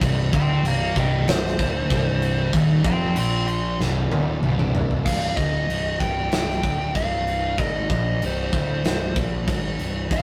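A straight 4/4 pulse at 95 BPM drives this sludgy, brooding stoner and doom metal passage in C minor, cut from a longer piece, with a big acoustic rock kit up front: punchy kick, medium-tuned snare, toms and bright crash cymbals in a big room, and a drum fill at 3.8 seconds. Two dark, picked fuzz guitars grind out a low riff in the background, one dropping out at 5.0 seconds, while an overdriven fuzz bass sits up front beneath them. A compressed fuzz lead guitar enters at 0.3 seconds with a high solo, all captured as a rough rehearsal-room recording with tube saturation and light reverb.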